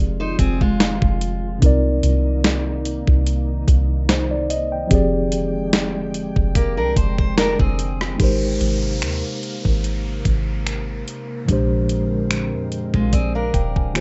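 A gently swung, unhurried 4/4 groove from a clean 12-bit drum machine anchors this sensual, late-night contemporary R&B excerpt, its thumpy kick, medium-tuned snare, rim click, hi-hat and finger snaps sitting up front with a tape-warm, sampler-style character, as if re-recorded in a large room. Beneath it, a soft 808-style bass offers deep, round sine tones with a fast attack that decays into dark low end. A mellow, clean tine electric piano carries the accompaniment through built-in speakers, while a glassy, ethereal FM pad hovers in the background with slow attack, long release, ensemble chorus, built-in reverb and sidechain pumping. A dark, picked steel-string acoustic guitar plays delayed arpeggios up front, appearing briefly at the opening and returning at 6.6 s. The harmony moves through Fm7, Cm9 and Fm69 before shifting to Abmaj9 at 8.2 s, where an electronic downlifter enters, and then to Bb13 at 11.5 s, all within a dry, rough home-demo mix with a dull top end.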